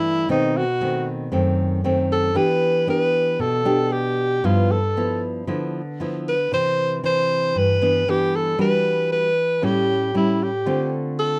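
A straight 4/4 bossa nova groove at 116 BPM in C major sets a sunny, romantic mood for this brief passage, cut from a longer piece. An alto saxophone carries the melody in a jazz style, playing with vibrato, subtone and scooped notes, while a fingerpicked nylon-string guitar supplies a classical-flavoured accompaniment through chords such as B7b9, Cmaj9 and A7. Both instruments sit up front and play throughout, captured by close, detailed microphones that give the saxophone a present, warm tone, with a touch of light reverb.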